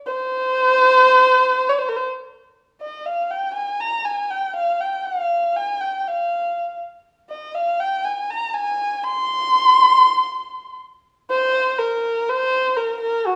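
Longing and soulful, this short Turkish excerpt in free time finds a lone bowed kamancheh playing a dark, woody line in makam ussak on C, tuned to A4 = 436 Hz, its vibrato and portamento placed up front yet bathed in a large studio reverb that lends a distant glow as it sings from 0.1 to 13.4 seconds.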